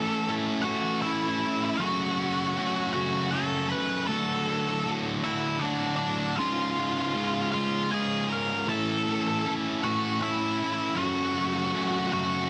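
Bittersweet and cathartic, this brief rock passage moves at a slow 52 BPM in a straight 6/8, tuned slightly below standard at A4 = 438 Hz. Both guitars play together from the opening to 12.5 seconds, each sitting up front in the mix. The octave-fuzz lead guitar carries the melody across a range of D4 to Cb6, its dark, picked fuzz tone colored by distortion and a slapback echo. Alongside it, a bright, double-tracked fuzz guitar drives a compressed, distorted riff spanning Db2 to A4. The harmony cycles through A, Gbm, D and Db before returning to A and Gbm, all bathed in an echo-chamber reverb with a 2.4-second tail. The dense, heavily limited modern master presses the sound together, and the clip is cut from a longer piece.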